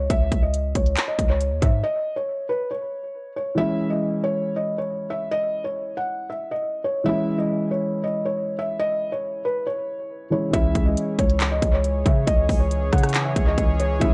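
A soft, felt-muted upright piano with audible action noise carries the melody through analog delay in this brooding, melancholic half-time trap excerpt at 138 BPM in C# minor, where punchy 808-style bass and a gritty 12-bit trap kit of hard-clipped kick, crisp hi-hats, handclaps and rim clicks drop out around 1.8 seconds, a dark concert grand with deep bass and short sustain adds delayed accompaniment from 3.5 seconds, and the bass and drums return at 10.5 seconds as a detuned sawtooth pad with chorus enters to sustain chords in an echo-heavy, lightly reverberant mix.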